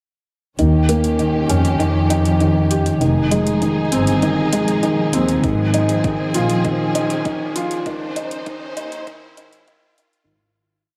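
Melancholic and moving, this short piano-and-strings electronica piece is one continuous build from 0.6 seconds. A soft, felt-muted upright piano sits up front with an arpeggiated riff in a 12-step loop drifting against the bar, its action noise audible through a digital delay. A distant, lush string section holds sustained chords over a dark, bowed double bass section playing long gliding notes, both pumping with the sidechain. A metallic electronic hi-hat keeps a restrained pulse, a deep four-on-the-floor kick joins at 5.4 seconds, and a very quiet riser enters at 5.5 seconds. A filter sweeps throughout, and everything fades out from 7.1 seconds in an echo chamber reverb.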